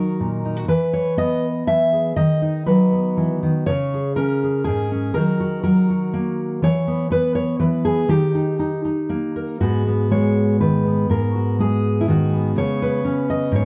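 A full-bodied, fingerpicked steel-string jumbo acoustic guitar with fresh strings plays alone and up front in this haunting, reflective folk fragment, cut from a longer piece. It is in G# minor at 122 BPM in 3/4, with a rubato feel, and moves through D#m, E and B/D# before a new passage arrives at 9.6 seconds on G#m7, settling on C#5 at 12.6 seconds. A moderate, large studio reverb and a dark, warm production surround the guitar across its range from G#2 to E5.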